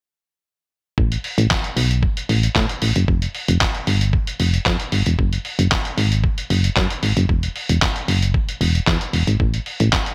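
At 1.0 seconds, a punchy, round FM bass and a lo-fi sampler-style drum kit enter together, both up front, in a summery, carefree dance-pop excerpt at 114 BPM in straight 4/4, tuned to A4 = 441 Hz. The bass is digital and mellow, with a fast attack, a decaying tail and sidechain pumping. The pitched-down, muffled drums bring a thumpy kick, medium-tuned snare, hi-hat and handclaps with a compressed, tape-tinged small-room character and gated reverb, all within a dry, bright 1980s-style digital production.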